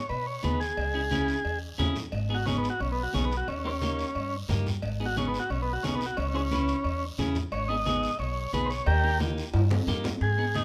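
A buzzy, overdriven combo organ with heavy vibrato leads a fiery, passionate cumbia at 178 BPM in G# harmonic minor, sitting up front beside a thumpy, woody pizzicato upright bass, while a bright, twangy clean electric guitar enters at 0.4 seconds, low-tuned congas and distant ringing cowbell and timbales fill out the background, and a raspy guiro sits close and dry, with a moderate large studio reverb before a drum fill at 9.2 seconds in this excerpt.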